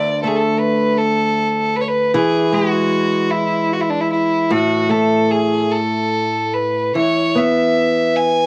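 A rich, intense fiddle with light vibrato carries the wistful, tender melody of this brief fragment of a Celtic slow air in 6/8, drifting rubato at around 48-54 BPM in E mixolydian, while a bright, boxy fingerpicked acoustic archtop guitar with audible finger squeak accompanies it throughout, both with the character of a home cassette recording set in light reverb.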